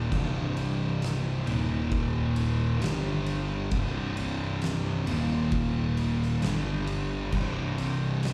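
Stoner and doom metal with a sludgy, hypnotic mood, cut from a longer piece and heard as a live gig through the venue's PA with recital hall reverb. Two thick fuzz guitars play distorted, picked riffs set back in the background, cycling through power chords on C, E-flat and G, while a growly, overdriven picked bass sits beneath them in the low register. An oversized, low-tuned acoustic kit enters at 0.1 seconds with a punchy kick, fat snare and dark crash and ride cymbals, its bright stone room pumping around the band.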